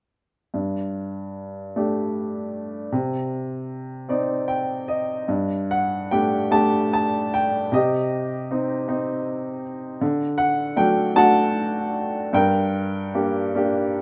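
A clear, woody upright piano sits up front in a moderate recital hall reverb, in this short excerpt of reflective, wistful classical solo piano in G harmonic minor, played with rubato in 6/8 at roughly 47-54 BPM. The lone piano ranges from G2 to A5, opening on Gsus2 and Cmadd9 harmonies before a brief fill at 4.1 seconds leads into a second passage at 5.3 seconds. That passage moves through Gsus2, Cm and D before settling on G minor near 12.3 seconds.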